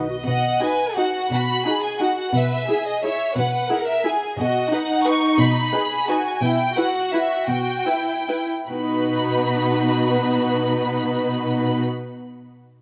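A close, detailed recording on a scoring stage with moderate reverb frames this short classical string passage, cut from a longer piece, in B major and 3/4 with an elegant, festive mood and a rubato feel at 141-191 BPM that slows between 5.9 and 8.7 seconds. Up front, the violin section carries a focused, lush melody over a second violin line with a smooth, even tone, while the close violas supply bowed accompaniment with vibrato and the up-front cellos hold a soft-attacked, expressive bass on B2. The harmony rocks between B and E/B, then turns to a darker Em/B before settling back on B as a brief new section begins at 8.7 seconds.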